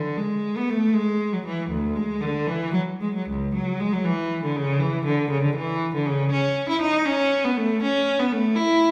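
A reverberant recital-hall acoustic, like a church or concert hall, surrounds a single bowed cello in this short, serene fragment cut from a longer baroque-style suite movement. The cello's tone is rich and focused, with vibrato. It moves through a dance-like 12/8 lilt at about 80 BPM in dotted quarters, with free rubato, and ranges from C#2 up to E4 over its 8.9 seconds, tuned to A4 = 441 Hz.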